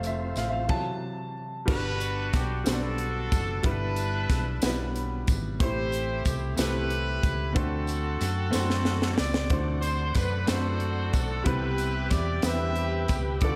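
A distant, roomy horn section with light vibrato carries the melody from 1.7 s in this hopeful, jubilant slow gospel excerpt in 6/8 at 61 BPM in G major, after an intimate grand piano with audible action noise and slapback echo opens the piece, and the horns join a round, punchy hollow-body bass up front, a crisp fusion kit with a high-tuned snare, dark cymbals and a drum fill at 8.5 s, a jingly tambourine in the background, and a reedy, lightly overdriven tonewheel organ with key click and slow rotary speaker that returns with sustained chords at 9.5 s, all set in a lush hall reverb with a big arena sound.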